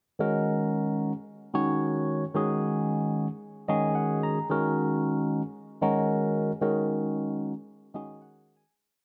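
A lightly swung sixteenth-note groove at 112 BPM in 4/4 drives this short, slick jazz piece in Eb minor, built on a single Ebm7 chord. A lone barky tine electric piano sits up front with a bright, clean, direct tone and a touch of phaser, pushing the chord rhythm in quartal voicings from Eb3 up to Bb5 and slipping in fills at 3.4 and 7.7 seconds. A moderate plate reverb surrounds it before the piece fades out from 6.6 seconds.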